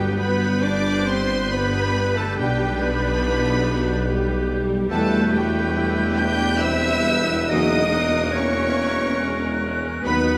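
From the first beat a symphony orchestra plays a solemn, melancholic slow romantic movement in G major at 71 BPM in a rubato 3/4: a lush, focused violin section sings the high melody over a distant, intense second violin section, a bright clarinet and oboe, and a pure, close-miked flute group, while smooth violas, ringing thumb-plucked harp arpeggios, very quiet mellow French horns and tight trombones carry the harmony above rich cellos, double basses and a present tuba, heard in a moderate concert hall reverb as the chords move from G through Em to F#7/E in this excerpt.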